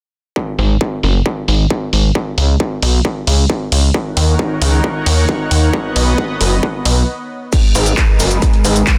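Euphoric, soaring uplifting trance in G# minor at 134 BPM, cut from a longer piece, where a distorted, up-front electronic kick drives beneath a techno kit of warm, filtered, pumping hats, crash, handclaps and shaker and a gritty, aggressive sawtooth bass with oscillator sync and ring modulation under a filter sweep that stops at 7.5 seconds, while a lush, detuned unison pad with chorus enters at 3.9 seconds over chords moving from F#sus2 through Bsus2, D#m7 and Badd9 to G#madd9, all in a dense, heavily limited master with little reverb.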